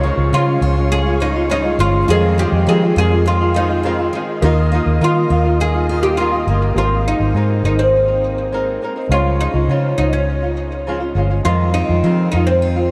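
Easy-going and carefree, this acoustic pop excerpt moves at 102 BPM in Ab major. A plectrum-plucked oud carries the melody up front, its double strings sounding deep through a touch of delay, over a fingerpicked flamenco guitar with audible finger squeak and subtle chorus, a very quiet, slightly detuned upright piano, and a round, punchy muted electric bass. A flute-like tonewheel organ holds soft chords through a slow rotary speaker until 6.7 seconds, while a bright steel-string guitar picks arpeggios with delay in the background, pausing from 7.3 to 11.4 seconds, and a huge ambient reverb soaks the mix in a dreamy haze.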